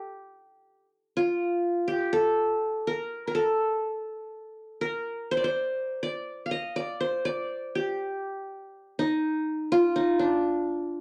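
Longing and soulful, this short excerpt of Arabic music sets a solo qanun in D maqam kurd at 122 BPM in a straight 4/4, tuned slightly low at A4 = 439 Hz. Played with fingerpicks across D4 to F5, the qanun sits up front with a bright-edged, triple-stringed tone, colored by cassette tape. A home recording on cassette, it carries a wet studio reverb with a 0.6-second decay, and the qanun plays alone for all 11 seconds.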